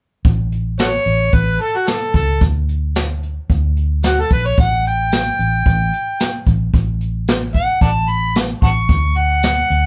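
Straight-eighth soul blues with a laid-back, rollicking mood, played live in one room with light reverb: a dark, round, foam-muted fingered electric bass and an airy brushed kit of hi-hat, boomy kick, snare and tambourine sit up front, joined at 0.8 seconds by a gritty, overdriven amplified harmonica that solos in a jazz style with tongue slaps and scooped notes over a chordless stretch before the harmony moves from A7 to D.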